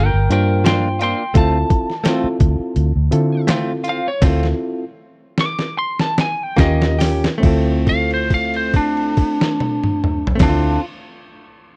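A slightly broken-up lead guitar carries the melody up front in this brooding, soulful straight-eighth soul blues excerpt in D minor, sitting at 69-86 BPM and slowing from 1.3 to 7.4 seconds, over a barky, gritty electric piano, a round, foam-muted fingered bass, a muffled, pitched-down sampler-style drum kit with a thumpy kick and overdrive that plays a fill through a stop at 4.2 seconds, and clean, direct-recorded guitar stabs, all in a dry, close 1970s-style studio sound, before the music settles on a held note from 7.4 seconds.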